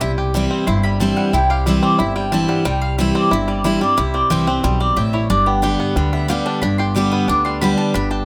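Bluegrass excerpt at a lively, virtuosic 182 BPM in straight 4/4, where a round, double-strung mandolin takes the solo spotlight with picked stabs over an up-front, full-bodied dreadnought guitar accompaniment, twangy fingerpicked banjo arpeggios and a woody, thumpy gut-string upright bass, all moving from C to G at 5.3 seconds in a close, detailed recording with light reverb.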